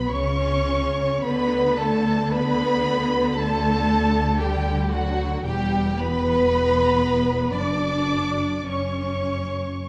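A dark, warm production places this short cut from a slow, romantic movement for string orchestra in a moderate concert hall reverb, giving it a yearning, elegiac mood. The music moves in 4/4 at 45-59 BPM with a rubato feel, set in B minor and played by every section for the whole passage. A distant, lush violin section carries the expressive vibrato melody high above, while a second violin section adds a rich, focused inner line beneath it. Violas supply a smooth-topped bowed accompaniment, and the bass is shared between an expressive, far-off cello section and a warm, studio-sounding double bass section. The harmony starts unaccompanied by chords, settles onto Bm/D at 1.2 seconds, moves through Em, and arrives on an open F#5 at 7.5 seconds.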